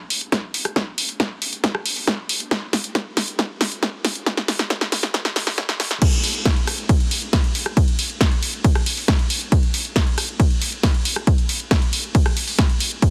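An up-front electronic kick drum drives this trance fragment, cut from a longer piece, at 137 BPM in a straight 4/4. The kick is analog and punchy with a tape-warm character, and a high-pass filter trims its low end. It enters at 0.3 seconds, just after an analog drum machine starts at 0.1 seconds. The drum machine is also up front, with a punchy snare alongside crash cymbal, hi-hat, ride cymbal and rim click. The opening six seconds form a build-up carried by a drum fill, and the drop lands at 6.0 seconds, giving the music a driving yet bittersweet mood. The sound is dry, with little reverb, and has a heavily compressed, radio-like quality shaped by multiband compression and a high-pass filter.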